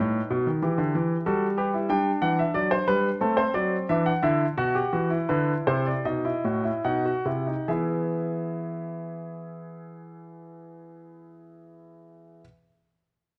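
Baroque-style classical music, this is a three-part fugue for solo grand piano, serious and driving in mood, cut from a longer piece and set in a straight 4/4 pulse. The piano carries everything from start to finish across 12.4 seconds, spanning a range from A2 up to G5. Its tone is intimate and natural, placed up front with long sustain, and the close, detailed microphones catch the audible noise of the action. The harmony moves from B to E minor, through G, A minor, B suspended and B7, and the pace slows from 0.6 to 7.7 seconds before arriving on E as a new section begins. A moderate recital hall reverb surrounds the instrument, giving the close sound a sense of the room.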